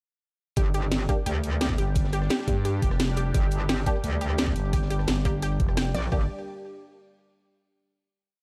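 Mechanical and futuristic, this short, dark technical drum and bass piece in G minor runs at 173 BPM, launching straight into a drop at 0.6 seconds and closing on a final chord from 6.1 seconds. An overdriven, knocking electronic kick and a tight kit of cracking snare, rim and bright hats drive the drums over a faint, gritty looped breakbeat. Up front, an aggressive, metallic wobble bass with tube saturation is joined at 1.8 seconds by a thick, growling FM bass playing chopped phrases. Above them, a detuned analog pluck repeats a 3-step sequence that drifts against the bar through delay, and it pumps against the sidechain along with an evolving, resonant pad. Sparse, nasal dub chord stabs echo through a phaser in the background of the dark, warm digital ambience.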